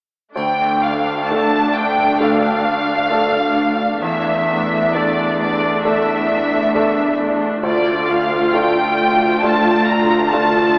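A lush violin section carries the melody up front, its vibrato focused yet faintly distant, in this moving, bittersweet excerpt of a cinematic, emotional film score for orchestra. Beneath it, a brilliant grand piano accompanies with long sustain and audible action noise, sounding present and intimate, while a smooth, even viola section fills the middle. A thumb-plucked concert harp rings out arpeggios in the background, and the cello section holds a low bass line. A barely audible triangle adds a faint shimmer only until 2.2 seconds, and the rubato feel lets the harmony drift from D minor through a suspended chord and back. The entire excerpt sits in a vast, echoing cathedral reverb, yet comes through with an AM radio sound.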